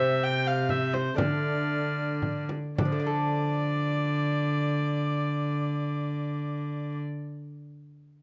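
Solemn and courtly, this short excerpt of a renaissance-style consort dance in D minor and 3/4 moves between 103 and 134 BPM, slowing over its opening 2.8 seconds as the harmony shifts from C to D minor, with a mellow, pure alto recorder carrying the melody over a distant, reedy viola second line, delicate fingerpicked lute with bright double gut strings, an up-front gut-string cello bass, and a small, dry frame drum struck with hard hands from 0.7 to 3.1 seconds, all caught by close, detailed microphones in light reverb.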